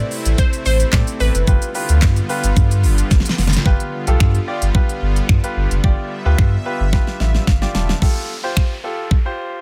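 A glassy wavetable pluck with chorus carries a brief melody over a bright concert grand piano, a lush detuned supersaw pad and a round sub bass, all three pumping against the sidechain, while a layered pop drum kit of knocking kick, fat snare, crisp hats, handclaps, finger snaps and shaker drives this euphoric, upbeat dance-pop excerpt at 110 BPM, with drum fills and a piano fill leading to a downlifter at 8.0 seconds in a dry mix.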